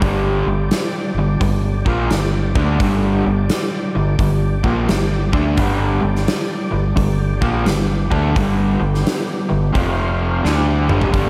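A raw, double-tracked garage guitar drives this raunchy blues rock and southern rock excerpt with an overdriven, picked riff up front, backed by a growling fingered bass, a punchy big rock drum kit with a bright stone-room sound that closes on a fill at 10.4 seconds, and a thick, gritty tonewheel organ in the background holding sustained chords through chorus vibrato and a slow rotary speaker, all in a big arena-like hall.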